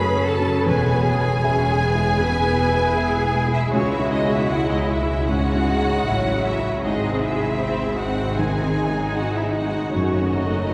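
Played rubato at about 78 BPM in 4/4, this bittersweet, longing cinematic fragment in C# minor is led by a lush, smooth-topped symphonic violin section singing the melody with vibrato. A closer, expressive studio violin section carries a second line beneath it, with clear violas, a rich cello section and a warm, vintage-toned grand piano in the background. Up front, a focused double bass section anchors the low end while a very quiet concert harp rings out fingerpicked arpeggios, all bathed in a long cathedral reverb heard from further back as the harmony moves through F#m, E, C#m and G#.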